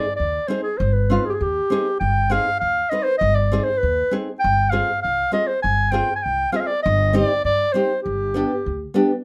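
Bittersweet yet festive, this short klezmer passage moves in a straight 2/4 and is cut from a longer piece. A mellow clarinet carries the melody up front in a classical style, playing solo above the ensemble between G4 and Ab5. Beneath it, a nylon-string guitar with old strings gives a woody, full-bodied fingerpicked accompaniment, while a pizzicato upright bass on steel strings supplies the low line from 0.2 seconds. The harmony sits over G in the bass, moving from Ab/G through Fm/G and Cm/G before settling on G at 8.1 seconds. A moderate studio reverb gives the trio a touch of room around it.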